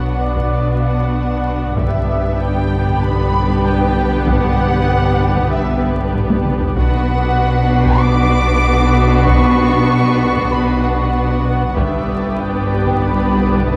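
Cinematic suspense film score in B minor at 96 BPM, eerie and tense, where muted violins carry a veiled melody over a distant chamber violin line, soft-attacked violas, background cellos and double basses, a deep rumbling drone and background taiko played with hard sticks, while a metallic, ringing vibraphone drops out at 6.8 seconds just as high muted violins enter after a drum fill, all set in a dark production with vinyl crackle and scoring stage reverb.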